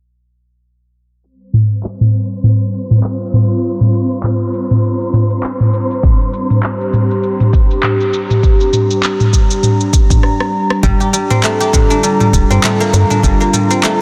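Organic downtempo with an earthy, meditative mood, where an up-front afro-pop drum kit of handclaps, rim click, shaker and toms enters at 1.2 seconds under a warbling, nostalgic tape-like pad with chorus, phaser and sidechain pumping and a breathy, wind-like noise texture, a deep electronic kick joins at 6.0 seconds, and after a drum fill and break a silvery guzheng plays ringing arpeggios through tape echo over a round, woody FM bass from 10.8 seconds.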